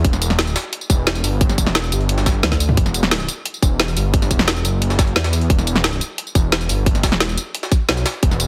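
Heavily compressed with a radio-like sound and light reverb, this dark, futuristic technical drum and bass fragment runs in a straight 4/4. Up front, a tight electronic kick sits with a layered drum and bass kit of woody snare, bright hi-hats, tambourine and toms, and a short drum fill arrives at 2.4 seconds, while a gritty, pitched-up jungle sampler-style kit with a high-tuned snare and tape-warm tone sits in the background of a large room. A thick, lush, detuned sawtooth bass with chorus and overdrive holds the low end with sustained notes.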